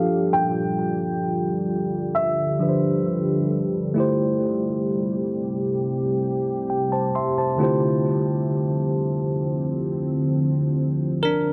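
Washed in light digital ambience, echo and a filter sweep, this smooth, dreamy R&B excerpt at 66 BPM in 4/4 opens with a brilliant, worn baby grand piano carrying a brief melody between E5 and G5 until 3.5 seconds, while a bell-like tine electric piano with analog delay accompanies and a deep, moody pad with chorus and slow-attack detuned sawtooth layers sustains chords through F69, Am7 and Dm11, both continuing until 11.5 seconds.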